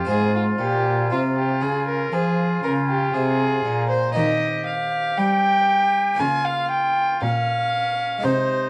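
Classical baroque-style sonata movement in F minor at a slow 59 BPM, solemn and introspective, where a clear oboe with light vibrato carries the melody, a gut-string violin sings a reedy second line up front, a nasal-toned cello anchors the bass and a brilliant, full-bodied harpsichord fills in the continuo. All four play throughout this brief 8.7-second fragment of a longer piece, which sits in a moderate studio reverb and carries the worn, warbling pitch drift of old cassette tape.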